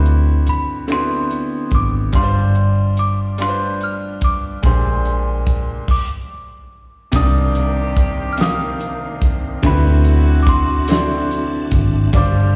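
Late-night and sultry, this slow R&B excerpt in C minor moves at 48 BPM in a straight 6/8 feel. A slightly out-of-tune, bell-like celesta carries the melody high above a brilliant grand piano whose accompaniment lets its action noise through, both touched with slapback echo. Up front, a round, foam-muted electric bass and a dry 70s drum kit, with its fat snare, tight kick, dark cymbals, hi-hat, crash and finger snaps, anchor the groove, and the band halts for a stop from 5.9 to 7.1 seconds. At 7.1 seconds the second section opens on a Cm9 chord as a smooth tonewheel organ, with chorus vibrato and fast rotary speaker, adds sustained chords in the background alongside tight, jazz-style horn stabs with light vibrato. The whole band sounds as if heard through a venue's PA, wrapped in recital-hall reverb and small-room ambience.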